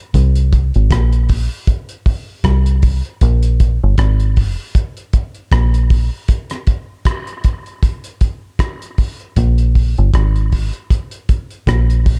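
This dub reggae piece moves at a heavy 78 BPM in 4/4, with a lightly swung sixteenth-note feel that gives its slow pulse a relaxed sway. A cloth-damped, thuddy acoustic drum kit carries the beat with hi-hat, a tight kick and rim clicks, sounding small-roomed and rolled-off at the top. Beneath it, a deep fingered electric bass sits low between G1 and C2, dark and round with a foam-muted, direct-and-amped tone, both parts placed up front in the mix. A break arrives between 6.3 and 9.4 seconds within this short section, which is cut from a longer piece. The sound is dry and close, leaving the mood weighty and deep.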